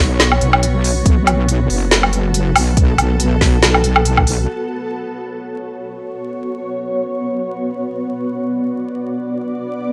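Heavy and cavernous, this deep dubstep cut sits in a half-time 4/4 groove with a lightly swung feel, opening straight into a drop. A saturated, detuned sawtooth-and-sine wobble bass dominates up front with chorus and a fast attack, and it stops at 4.5 seconds. A deep, layered electronic kick drum joins the low end for a short stretch, while a produced deep house kit adds smooth low-passed hats, a woody snare and a low-passed woodblock through studio reverb. Above them, a bright granular cloud pad holds blurred, evolving chords with a slow attack and long release, and in the second half it carries a filter sweep as the harmony shifts. The gritty hardware sound, vinyl crackle and light digital ambience give this fragment of a longer piece a dusty, subterranean character.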